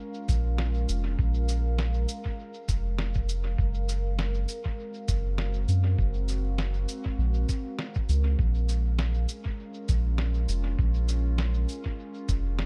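Hazy and spacious, this ambient dub excerpt moves at 100 BPM in Bb minor with a gentle 16th-note swing, as a warbling, detuned pad with chorus and its own reverb holds dark, nostalgic sustained chords from Bbm7 to Gbmaj9#11 and back. A round, mellow sub bass sits up front from 0.3 seconds, arriving together with muffled, pitched-down sampler drums: a thumpy, tape-warm kick with studio reverb and a compressed cabasa and medium-tuned snare carrying studio reverb and dub echo. The mix is echo-heavy yet otherwise dry, and the kick drops out at 12.4 seconds just before the fragment ends.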